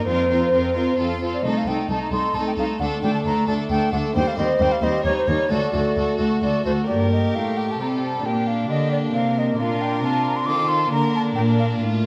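This festive baroque-style concerto movement in G minor opens at once with a bright wooden flute carrying the melody, its tone pure and tongued with vibrato, while two rich violin lines, a dark, nasal viola section and a mellow lute enter together beneath it. A moment later the cello section arrives up front on the bass line, with a gut-string, reedy bite. The bowed strings play in a period style with light vibrato, the upper ones with a smooth top, sounding like an intimate chamber ensemble, and the lute adds delicate, fingerpicked double gut strings, some doubled at the octave, from the background. At 134 BPM in a straight 3/4 and tuned to A4 = 436 Hz, the music moves with a brilliant lilt through harmonies including Eb7 and D before settling onto G minor and then B-flat. The flute drops out at 11.7 seconds as the strings and lute carry on to the close of this fragment of a longer piece, all set in a recital hall with a lingering 1.8-second reverb.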